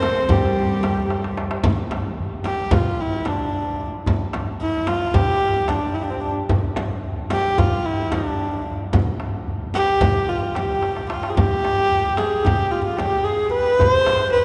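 In a straight 9/8 lilt, this hypnotic, longing piece from a Turkish makam ensemble carries an intimate, up-front kamancheh melody with light vibrato, portamento and an airy bow over a clay-shelled darbuka and a deep, hard-handed frame drum, while a distant, gut-string chamber cello section and a very quiet, breathy alto saxophone shade the opening before the saxophone returns at 11.1 s, in the middle of a drum fill, the ensemble bathed in a long cathedral reverb with a softened top.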